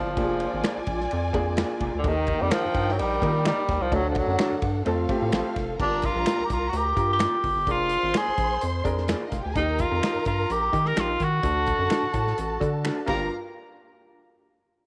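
A lightly reverberant small-room sound frames this urgent, driving excerpt of 1960s-style soul, where a breathy, up-front tenor saxophone with scooped notes carries the melody over a smooth bowed string section, a rubbery square-wave bass, an intimate grand piano with audible action noise, an acoustic drum kit with a punchy kick and dark cymbals that closes on a fill at 12.8 seconds, slightly broken-up electric guitar stabs and dry finger snaps in the background.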